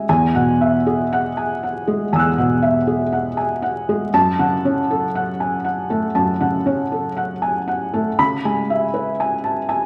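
A felt-muted upright piano plays alone from the very start, its soft, boxy tone sitting up front with audible action noise in this wistful, intimate excerpt of neoclassical minimalist piano. At a slow 59 BPM in a rubato 4/4, tuned slightly below standard pitch, it moves from Eadd9 to F#m at 4.1 seconds and on to C#m7 at 8.2 seconds, spanning E2 to F#6. A wet large-studio reverb and a layer of vinyl crackle frame the dark, mellow sound.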